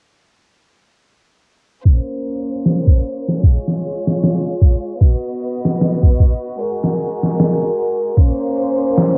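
Brooding and melancholic, this short trip hop fragment from a longer piece settles into a slow, swung groove in four. From 1.9 s to 9.2 s a chamber violin section holds sustained chords, bowed sul tasto with light vibrato and a soft attack, giving an intimate, close ensemble sound with a smooth top. Alongside it runs a sampler-style drum kit of kick, snare and hi-hat, compressed and pitched down, with a thumpy kick, a medium-tuned snare and a gritty, tape-warm edge that sits up front in the mix. Both parts carry vintage 12-bit sampler grit and cassette tape colour, and a filter sweep runs across the whole passage. The harmony moves from Bbmadd9 through Db, B and Gbadd9 before returning to Bbmadd9, all in a dry, low-passed home-cassette sound with little reverb.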